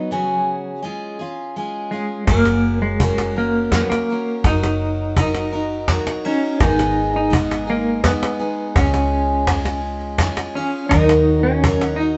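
A snappy, saturated cajon played with hard hands sits up front in this nostalgic, pastoral acoustic folk excerpt in 3/4 at 83 BPM in F# major, alongside a bright, full-bodied picked steel-string acoustic guitar that carries the chords from the opening. A dark, woody bowed cello with vibrato hovers in the background until 0.8 s, and a clean semi-hollow electric guitar with tremolo takes the fingered melody from 1.9 s. At 2.3 s the cajon, a round, amped hollow-body bass and a soft brush kit with a punchy kick join in, all playing live in one room with moderate reverb over chords such as C#sus4, F#, G#m and D#m.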